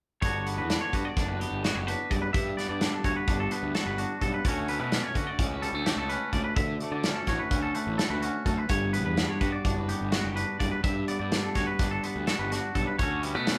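Math rock with a Midwest emo lean, this wistful, intricate passage cut from a longer piece moves in 9/8 at 254 BPM in eighths, swaying between Gmaj7 and Dmaj7. Two twangy electric guitars share the work, one bright, clean and picked on low accompaniment while the other, fingered and warm, spins arpeggios in a higher range. Beneath them a growly fuzz bass drives the low end alongside an up-front indie drum kit with a punchy kick and a medium-tuned snare, the whole band captured together in one room with light reverb.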